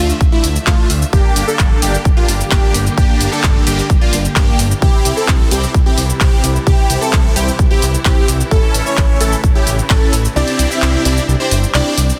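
The sound is dense and heavily limited, with a modern master and light reverb, in a powerful, emotional festival progressive house drop cut from a longer piece. Huge, bright supersaw chords carry the riff, their detuned sawtooth layers treated with phaser, lush chorus and digital delay. A punchy, catchy plucky unison lead plays arpeggios with vibrato, a filter sweep and a noise layer, sent through ensemble chorus and delay. Beneath them a fat, nasal analog bass holds the low end, while a rich symphonic string section sustains bowed chords in the background, and sidechain pumping ties the bass, strings, lead and supersaws to the beat. The overdriven pop drum kit, re-recorded in a small room, adds cabasa, handclaps and hi-hat, and a punchy electronic kick sits up front until it drops out at 10.4 seconds, as the harmony moves from Dm through Gm, C and A to a closing Cadd9.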